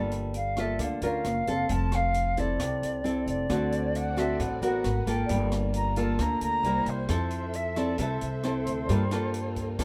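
A bright, fingerpicked nylon-string guitar sits up front in this sunny, romantic bossa nova fragment. Around it play a woody, growly pizzicato upright bass, an airy, distant concert flute carrying the melody with vibrato, and a natural-sounding jazz kit of hi-hat, rim click and boomy kick, moving through rich ninth and major-seventh chords, while a lush bowed string section enters with a soft attack in the background at 3.5 s, the whole set in light reverb.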